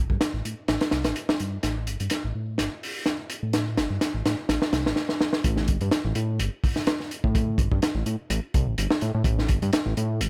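This breakbeat cut from a longer piece has a raw, swaggering mood, moving at 126 BPM in A minor with a light swing on the sixteenths. A fat, detuned sawtooth analog bass with tube saturation and a filter sweep sits up front beside a crunchy, gritty acoustic kit that has a punchy kick, a high-tuned snare and a dark, rolled-off top. Drum fills run through the build-up from 1.6 to 5.4 seconds before the drop lands at 5.4, all in a dry, close sound with little reverb.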